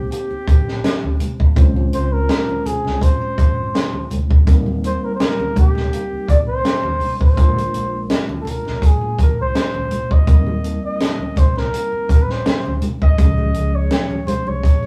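A flugelhorn carries the melody from the opening moment, its smooth top floating over a mellow tine electric piano and a dark, round, foam-muted fingered bass, all sounding together at 0.0 seconds in this lush 1970s-style soul excerpt. A compact cocktail drum kit, sitting up front with a punchy kick, a high-tuned snare and hi-hat, joins with thick-skinned, low-tuned congas at 0.1 seconds. The groove moves at an unhurried 83 BPM in 4/4 with a light swing on the sixteenths, settling into a smooth, easy mood in Eb major. The electric piano sounds clean through its built-in speakers, while the amped bass and the congas stay tucked in the background beneath the pop-style flugelhorn solo. The harmony drifts between Eb6, Dbmaj7 and Bb7 before touching Db near the close. The whole take has the rough, intimate feel of a rehearsal room, with warm saturation and a short, natural small-room reverb giving it a warm, close presence.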